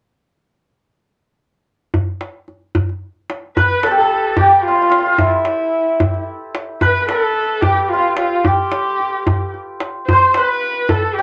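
A short reverb gives this piece of Persian modal ensemble music a wet club ambience, while the tombak stays tight and dry, struck with hard hands from 1.9 seconds in a stately, festive 6/8 at 74 BPM, tuned to A4 = 437 Hz. At 3.6 seconds the bright, shimmering hammered santur carries the melody between E4 and C5. Beside it a single warm kamancheh plays an expressive bowed second line in the same range, rich with vibrato and portamento.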